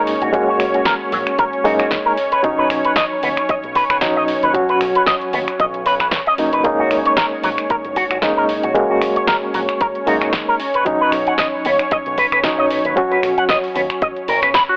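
A swung sixteenth-note groove at 114 BPM in 4/4 drives this feel-good, sunny nu-disco clip, cut from a longer piece and built on a punchy, layered electronic kick and a house kit of finger snaps, bright hi-hats and a punchy snare, all pulsing from the first fraction of a second. A twangy, clean electric guitar through an envelope filter carries the riff from F#3 up to B5, with subtle chorus and a low-pass filter, and a filter sweep runs across it for the full 14.8 seconds. Up front, a reedy electric piano with fast tremolo, tape echo and a low-pass filter supplies the accompaniment, while a lush, detuned sawtooth unison pad with a slow attack and chorus holds sustained chords that warble with a vintage character. Underneath, a fingered electric bass with an envelope filter sits in the background between F#1 and F#2, and the piano, pad and bass all breathe with sidechain pumping. The harmony moves between F#6 and Badd9, and the whole mix has a dry, gritty hardware quality with a telephone-like narrowness and only light reverb.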